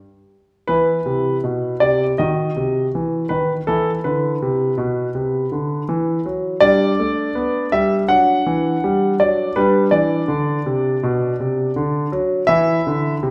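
A wet recital hall reverb, with a decay of about 1.5 seconds, surrounds a solo grand piano that sits up front, its tone clear and polished with long sustain and the mechanical sound of the action audible. This is a short passage cut from a longer classical-period piano sonatina, elegant and cheerful in mood, moving at 81 BPM in 4/4 with a flexible, rubato feel. The piano plays alone from 0.7 to 13.3 seconds, ranging from B2 up to F#5. The harmony opens on an open fifth on E, moves through a C diminished chord and back, then settles into G and D before landing on E again near 12.5 seconds. The close placement gives the playing an intimate character, even as the hall's reflections linger around each phrase.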